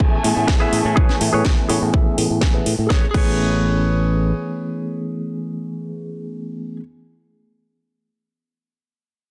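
A straight 4/4 pulse at 124 BPM drives this sunny, joyful filtered disco house excerpt in A major, opening on an Amaj9 chord. A punchy, tape-warm electronic kick sits up front, joined by a house kit with a cracking snare, metallic hi-hats and crash cymbal, its hats, percussion and cymbals pumping to the sidechain. A growly, bright fingered electric bass carries the low end, while a tine electric piano heard through built-in speakers supplies phased accompaniment and a twangy, picked clean electric guitar repeats a riff roughened by vintage 12-bit sampler grit, adding a fill along the way. A lush bowed violin section holds expressive sustained chords with vibrato until 2.9 seconds, and a filter sweep runs across that opening stretch while the melodic parts all pump and sit under a low-pass filter. The drums drop out at 3.3 seconds and the bass at 4.3 seconds, leaving the electric piano and guitar to carry on through light reverb in a dense, heavily limited modern master.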